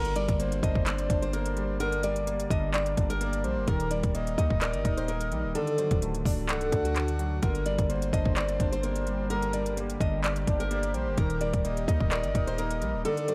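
A layer of vinyl crackle sits over this dark, menacing trap excerpt, which moves with a heavy half-time feel. A fingerpicked classical nylon-string guitar carries the melody, and a soft, breathy flute-like synth lead with vibrato, chorus and tape echo traces a second line above it. A worn baby grand piano with long sustain supplies the accompaniment, while a deep, detuned ambient pad holds moody sustained chords in the background, softened by chorus and reverb. Up front, a punchy, heavy 808-style bass drops out at 13.0 seconds, and an electronic trap kit drives the beat with a hard-clipped kick, crisp hi-hats and handclaps. The harmony circles through G minor, E-flat and D, giving the piece a brooding edge.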